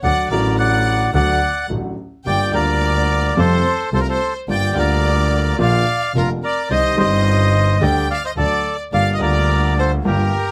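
Close, detailed microphones and light reverb frame this melancholic, dramatic tango fragment played in free rubato, where a reedy, dark bandoneon carries the melody up front, a bowed string section with focused vibrato adds a clear second line, a vintage grand piano with deep bass supplies smooth accompaniment, and a single bowed double bass anchors the low end.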